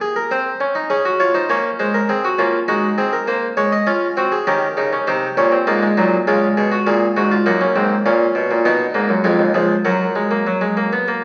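Heard through the crackle of a very old 78 rpm record, a solo harpsichord with a nasal, plucked Flemish tone sits up front in a reverberant recital hall, spinning a joyful, stately baroque-style four-part fugue in triple time that shifts to a new key center at 8.1 seconds in this brief fragment of a longer piece.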